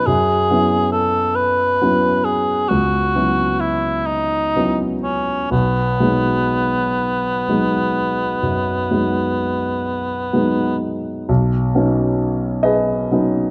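Dreamy and luminous, this impressionist classical duo drifts in a rubato 12/8 lilt, taken from a longer piece. A warm cor anglais sings the melody up front with light vibrato and a soft attack until 10.8 s, while a polished, present baby grand piano carries on to 13.5 s, its harmony moving from F#9sus4 through B6 to Badd9. Close, detailed microphones and light reverb lend the pair an intimate clarity.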